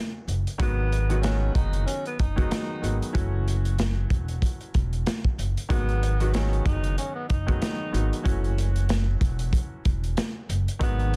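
A filtered upright piano opens this gritty, tough boom-bap hip-hop excerpt, its woody tone and audible action noise sitting intimately in the background as it moves between F#m7 and G#m7. At 0.3 seconds a pizzicato upright bass with steel strings enters up front, alongside a crunchy breakbeat kit of kick, snare and hi-hat. The drums sound saturated and dark, with a rolled-off top, a tight kick and a medium-tuned snare, all riding a swung sixteenth-note feel. From 0.6 seconds a distant, breathy tenor saxophone carries a jazz-style solo melody in subtone, with vibrato, scooped notes and a soft attack, its whispered, roomy sound shaped by filtering and delay. The bass is the loudest part and the kit sits nearly as high, while the piano and saxophone stay further back. Studio reverb surrounds the parts, and the dense, heavily limited modern master gives the mix a compact, forceful weight.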